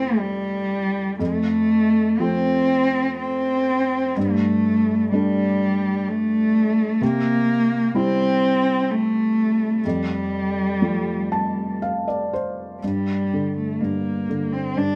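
In a slow, rubato 3/4 at about 62 BPM with uneven beats, this Celtic slow air in G dorian unfolds with a mournful, haunting mood, a short fragment of a longer piece. A single bowed cello carries the melody up front in a narrow low register, its soft attack, vibrato and portamento giving the line a warm, expressive voice. Beneath it, a felt-muted upright piano plays dark, mellow accompaniment across a broad range, its boxy tone and audible action noise lending an intimate, close-up quality. The harmony drifts through Fmaj7, F, Gsus2, C and Fadd9 before the piano adds a soft fill from 10.8 seconds, leading into a new section at 12.8 seconds that settles on a bare G5. Close, detailed microphones and a light reverb keep the sound clear and personal.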